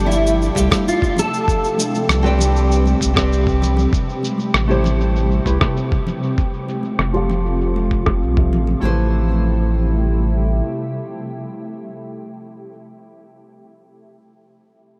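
Sunset chillout at 98 BPM in A minor, relaxed and warm, drifting through a dreamy mix soaked in a huge ambient reverb over chords moving from G9sus4 through Cmaj7, Am7 and F. Fingerpicked nylon-string guitars carry a brief chorused, delayed melody that stops at 2.4 seconds and a filtered accompaniment with fresh strings, while a shimmering, ethereal pad with octave-up shimmer and phaser sustains chords above a deep, round sub bass sitting up front. Gritty, tape-toned electronic cabasa and rim click, a thumpy compressed kick and bright, high-tuned congas in the background play under a filter sweep on the drums until 8.8 seconds, when the section changes and the beat falls away.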